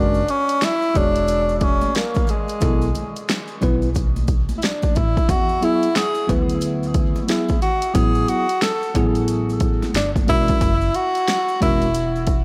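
A moderate spring reverb and an echo-heavy mix give this short cut from a longer piece a smoky, cool haze. It is a jazz-hop groove in B dorian at 90 BPM in 4/4, with a 63% swing on the sixteenths. Up front, a breathy tenor saxophone carries the melody in a mellow, jazz-style solo, using vibrato, subtone and scooped notes, its line washed in dub echo. A worn, slightly out-of-tune tine electric piano plays clean, direct accompaniment, while a woody pizzicato upright bass on steel strings holds the low end. A punchy, layered electronic deep house kit with a fat snare, kick and hi-hat enters at 0.3 seconds and sits forward. Distant maracas and congas, struck with hard hands in a large room, stay in the background with their own dub echo, as the harmony moves from F#7(omit3) through B7sus4, E7, A5 and G before returning to F#7.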